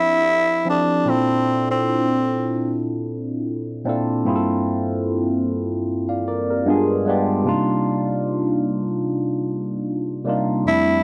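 A lightly swung sixteenth-note feel in 4/4 carries this slow, soulful and smooth R&B excerpt from a longer piece, moving through rich chords from Fmaj9 and Bbmaj9 to Gm11, G7b9 and Cm9. A growling, raspy, breathy tenor saxophone sits up front with a jazz-style solo line and slapback echo, playing from 0.0 to 2.9 seconds and returning briefly at 10.7 seconds. Throughout, a bright, barky tine electric piano through a combo amp supplies clean accompaniment with a phaser, all captured in a dry, close 1970s-style studio sound with light reverb.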